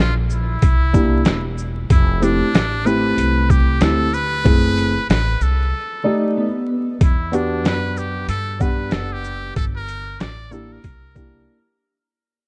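A metal-muted trumpet opens this mellow, cool jazz-hop piece alongside a woody, growly pizzicato upright bass, the trumpet buzzy and breathy with light vibrato as it carries the solo melody in a jazz style. A compressed, pitched-down boom bap sampler-style kit joins up front with a thumpy kick, medium-tuned snare, hi-hat and shaker, all swinging on sixteenths. A concert grand piano accompanies with jazz chords, its audible action noise and deep bass sounding intimate, smooth and vintage. At 6.1 s a clean, fingered electric guitar with ensemble chorus adds a brief second line during a break, and from 7.0 s the music fades out through its second section. Light small-room reverb and vinyl crackle wrap the dark, warm production.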